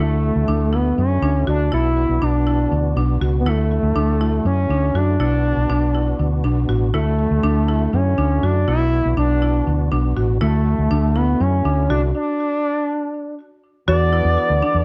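Driving and bright, this progressive instrumental fragment in a straight 7/8 sets a smooth, sawtooth-edged synth lead up front over a round, hollow-bodied fingered bass, a lightly overdriven percussive tonewheel organ in the background and a buzzing, woody marimba arpeggio touched with tape echo, all pausing together at 12.1 seconds before a distant, brilliant trombone steals in at 13.9 seconds over a dark, warm mix.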